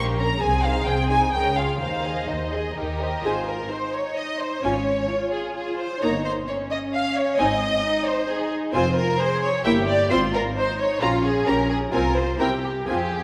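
A quick, stormy and restless classical-period movement for string orchestra at 131 BPM in 3/4 with a rubato feel, moving from Ab major into F minor at 8.7 s, where a lush first violin section carries the melody with soft-attack vibrato over an expressive second violin line, smooth, even violas, woody, dark cellos and focused double basses, all bathed in a wet concert hall reverb in this brief cut from a longer piece.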